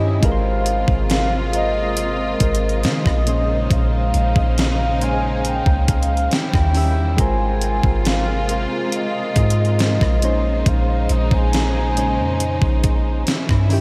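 Drenched in a huge, dreamy ambient reverb, this tender contemporary R&B excerpt unfolds in a slow, straight 4/4 over a gently repeating cycle of lush extended chords. A mellow, horn-like synth lead with vintage warble and vibrato carries the melody through tape echo and chorus, floating above soft, round electric-piano-like synth keys and a rich, bowed studio string section holding sustained chords. A deep, dark 808-style bass sits up front, and from 0.2 s a thumpy, overdriven 80s drum machine with a gated-reverb snare, rim click and hi-hat gives the haze a retro pulse.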